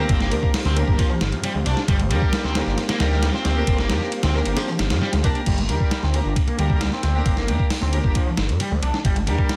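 Gritty and funky, this breakbeat excerpt in G minor drives along at 134 BPM in a straight 4/4, opening on a drop over a G minor chord. Up front, a dusty, sampler-style soul drum kit punches with a thumpy kick, medium-tuned snare, hi-hat, ride and crash, while a phased, detuned sawtooth bass swirls low and thick with tube saturation. A bright fuzz guitar plays a distorted, picked riff through overdrive, low-pass filtering and tape echo, and a lush studio string section fires bowed stabs roughened by vintage 12-bit sampler grit and tape echo. In the background, a smooth, clean tonewheel organ holds sustained chords with key click, chorus vibrato, a slow rotary speaker and sidechain pumping, dropping out at 5.4 seconds. From 5.5 seconds a filter sweep on the guitar carries the second section, all sitting in light reverb under a dense, heavily limited modern master.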